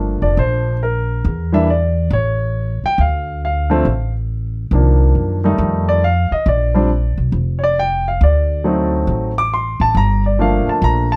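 A dark, lightly reverberant production frames this smoky, moody jazz piano trio fragment in G minor at 138 BPM with a swung 4/4 feel, tuned to A4 = 442 Hz, where an up-front, natural-sounding baby grand piano with a warm tone carries the melody and a woody, steel-strung upright bass plucks the bass line beneath it for the full 11.2 seconds, moving from Gm9 through Cm11, F9 and D7b9 before returning to Gm9.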